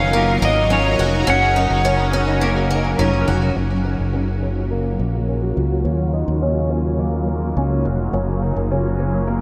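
A warm, sliding lap steel carries the melody with volume swells and tape echo, then falls away at 3.0 seconds in this floating, ethereal dream pop piece, cut from a longer work, at 105 BPM in F# major. Beneath it, a bright, up-front ambient pad sustains granular, detuned chords through chorus and phaser, and a boxy, octave-doubled twelve-string acoustic guitar picks arpeggios. A very quiet, dark electric guitar plays until 4.1 seconds, and a round fingered bass anchors the harmony as it moves from F#maj7 to D#m9 and back, all inside a huge, reverb-soaked mix with a filter sweep from 3.6 seconds.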